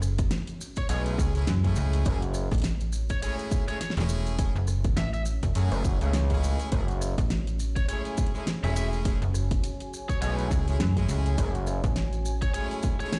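A snappy, metallic slap-like FM bass opens this swaggering, gritty glitch hop excerpt on a single minor-seventh chord with a pop drum kit of fat snare, rim click and metallic hats, background maracas and a deep, moody detuned pad that pumps behind a punchy, up-front electronic kick, before an overdriven lead guitar with digital delay enters at 0.8 seconds, followed at 0.9 seconds by loose, brilliant horn stabs with vibrato and octave doubling and a nasal, saturated sawtooth synth bass with a filter sweep, all heard on a big sound system in a bare stone room.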